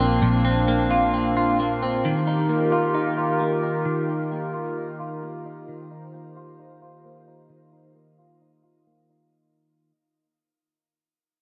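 A slow, straight 4/4 pulse at 66 BPM carries this haunting, melancholic dream pop excerpt, which moves from Bbadd9 to Ebadd9 inside a huge, wet ambient reverb while a fade-out and filter sweep run across its first 9.3 seconds. A clean, compressed electric guitar plays up-front arpeggios through subtle chorus, tape echo and shimmer reverb, over a hollow, flute-like pad of airy sustained chords with ring modulation and a noise layer. A round, punchy, foam-muted electric bass holds a low Bb only until 2.0 seconds.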